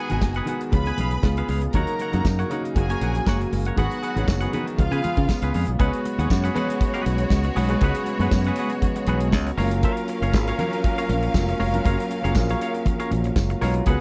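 Lush, distant strings, an intimate grand piano with audible action noise and a twangy, compressed electric guitar open this glamorous, danceable disco excerpt in F# major at 119 BPM, joined at once by a punchy, up-front fingered bass, a dry 70s drum kit with a tight kick and quiet hard-hand congas. Mellow French horns enter with sustained chords at 1.7 seconds and a jingly tambourine sits in the background from 2.3 seconds, as the harmony moves through G#m7, C#7 and D#m7 before settling on C#7sus4 and then F#maj7 at 9.6 seconds. The sound is close and dry, with a small room reverb in the manner of a 1970s studio.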